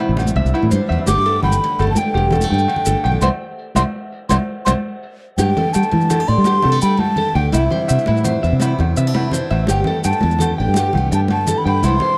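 A straight 12/8 groove at 112 BPM drives this sunny, joyful highlife guitar band excerpt, where an airy, expressive baroque flute with vibrato enters at 1.1 seconds over a round, up-front fingered bass, bright picked acoustic guitar, slightly broken-up electric guitar arpeggios washed in spring reverb and tape echo, ringing congas and agogo bells, and grainy maracas, with a band accent from 3.2 to 5.4 seconds in a dry, close 1970s-style studio sound.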